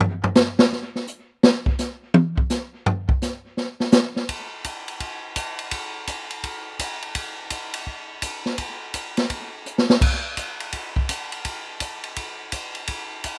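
A swinging big-band drum kit opens alone with a solo over its first 4.3 seconds, moving across crash, ride, hi-hat, snare, toms and kick in an energetic, brassy jazz feel. The kit then carries on swinging through the next section, broken by a short fill at 9.7 seconds, before this clip of a longer piece cuts off. The sound is acoustic and natural, with a punchy kick and a medium-tuned snare placed up front in a dry mix with very little reverb.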